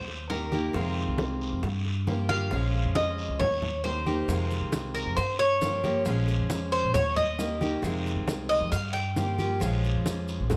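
A straight 4/4 groove at 135 BPM drives this sultry, nostalgic Cuban son and guajira fragment, where a metallic, double-strung Cuban tres plays up-front arpeggios over a woody, growly pizzicato upright bass and a bright, full-bodied picked steel-string acoustic guitar, while ringing low congas, tight high bongos, a raspy, distant guiro and grainy maracas (entering at 4.3 seconds) sit back in light reverb as the chords cycle through Eb, Fm7, Gm7 and Bbm7.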